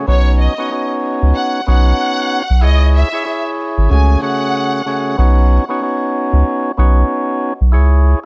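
A percussive tonewheel organ opens this warm, soulful hip hop fragment at 94 BPM in B mixolydian with a swung 16th-note feel, its fat, lightly overdriven and tape-colored chords carrying the Badd9 to C#m to F#madd9/C# progression up front, while a deep, round dub sub bass sits beneath and a clear, lush studio violin section with vibrato and a smooth, delay-touched top states the melody until 5.1 seconds, all within a small room ambience.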